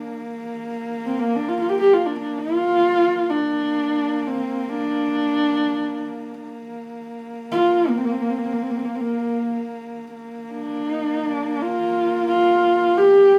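Unfolding in free time, this short cut from a longer piece of Mongolian folk music carries a galloping, proud mood. Two horsehead fiddles play throughout its 13.4 seconds, both bowed on horsehair strings by single players. The melody fiddle sits up front with a dark, woody and husky voice, its vibrato and portamento colouring phrases that begin with a soft attack. Beneath it, a second horsehead fiddle holds a quieter drone on Bb3, intimate and close, with an airy bow, light vibrato and gentle slides. The pair sound like they are playing live together in one room, wrapped in a wet studio reverb that keeps the tail short.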